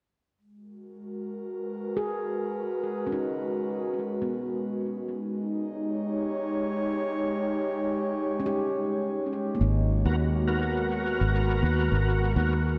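A dreamy, reverb-soaked plate sound frames this deep, meditative ambient excerpt in G# minor at 104 BPM, where an airy, breathy pad with chorus and 12-bit sampler grit holds sustained chords under a filter sweep, a mellow stainless-steel handpan rings out filtered arpeggios through tape echo from 2.0 s, a round, foam-muted fingered electric bass sits up front from 9.6 s, and an overdriven, gritty tonewheel organ adds thick stabs through slow rotary speaker and dub echo from 10.1 s.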